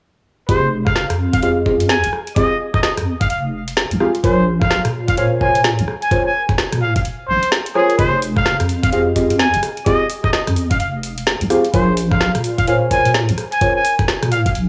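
UK garage in a two-step style, this soulful, moody excerpt moves at 128 BPM in F minor, its sixteenths swung with a lilting shuffle. A trumpet with a straight mute carries the melody up front, its tone nasal and breathy with light vibrato, scooped notes and a whispered, intimate quality, trailed by tape echo. Beneath it, deep mellow chord stabs with a sub octave and a filter sweep decay through a chorus and tape echo, cycling between Fm9 and Bbm9 roughly every four seconds. A deep, wobbling bass with a sine-like roundness and a compressed, sustained body sits prominently under the chords. The drums pair a knocking electronic kick with a garage kit of woody snare, rim click and metallic hats placed up front, both re-recorded in a small room. The whole recording has a dry, gritty hardware character set in light digital ambience, with every part entering at 0.5 seconds and the last ending at 14.7 seconds.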